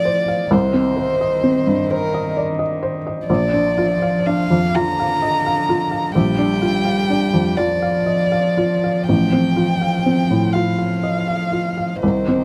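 Neoclassical piano and strings in Bb major, this 12.4-second fragment of a longer piece moves at a slow, rubato 39-44 BPM in 6/8, with a tender, hopeful mood. A felt-muted upright piano carries the accompaniment, its soft, mellow tone sitting up front with audible action noise and short sustain that make it feel intimate. Above it, a single violin sings the melody between Bb4 and Bb5, played sul tasto with light vibrato, a soft attack and an airy bow, heard close and rich. A lone cello adds a second line in a narrow D3 to G3 range, also sul tasto, its pure, floating sound smooth on top. The harmony drifts from F/A through Cm to a long stretch on Bb before settling back on F/A at 9.1 seconds. Moderate studio reverb and a dark, warm production wrap the trio.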